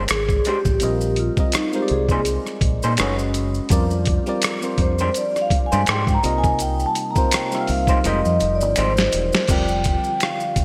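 Sultry and late-night, this R&B and neo-soul excerpt moves at 83 BPM with a lightly swung sixteenth feel in F dorian, led by a dark, ringing vibraphone solo with slow motor vibrato over a gritty, pitched-down boom bap kit with a thumpy kick and gated reverb, a round, punchy fingered bass, and a glassy, bell-like FM electric piano with chorus. A lo-fi, slightly broken-up electric guitar adds a second line until 8.9 seconds, finger snaps, maracas and group handclaps sit low in the mix, and a soft, flute-like tonewheel organ through a fast rotary speaker joins with sustained chords at 3.7 seconds. The bright 1980s-style digital production sits in a lush hall, and a drum fill from 8.0 seconds leads into a short new section at 9.5 seconds.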